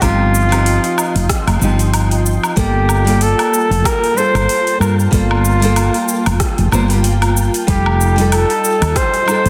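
Smooth and relaxed, this sunset chillout excerpt sits on a swung groove of soft electronic kick and an R&B kit of metallic hi-hat, rim click, shaker and woodblock, both re-recorded in a large room. A growly, up-front fretless bass with analog chorus anchors it, a fingerpicked nylon-string guitar adds accompaniment with gritty vintage sampler texture and digital delay, and a silky, warbling string machine holds sustained chords in the background. Out front, a clear flugelhorn with vibrato and delay carries the melody as the chords move from Eb69 to Gm9 at 2.6 seconds and F9 at 7.7 seconds, all under light reverb and a dense, heavily limited master.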